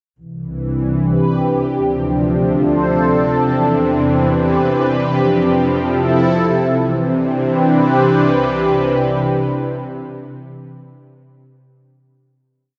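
A warm analog pad opens this serene ambient piece in C major at 73 BPM, its detuned sawtooth chords sitting bright and up front with chorus and a moving notch, while a dark bowed double bass section holds soft root notes in the background and fades out over its first 6.8 seconds. At 1.6 seconds a tense, string-like drone enters on C3, its detuned unison sawtooth and noise layer carrying vibrato and its own reverb. The harmony moves through Cmaj9, Dm7, Cmaj9/E and Fmaj9 before settling on a final Cmaj9 at 6.8 seconds, all steeped in a dreamy hall reverb with a soft, dulled top end.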